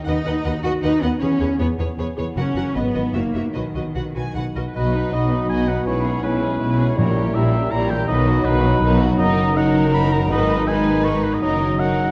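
Up-front, clear double basses and lush cellos drive this urgent, restless passage from a fast, dramatic romantic orchestral movement in B major at 161 BPM in 3/4, where distant violins carry the melody over a second violin line, smooth, warm background violas and ringing background harp arpeggios, until a solo oboe, hollow airy flutes, a dark, very quiet clarinet, a bassoon and mellow, roomy French horns join around 4.8 seconds, a brief very quiet timpani stroke sounds at 7.0 seconds, and a wet scoring-stage reverb surrounds it all.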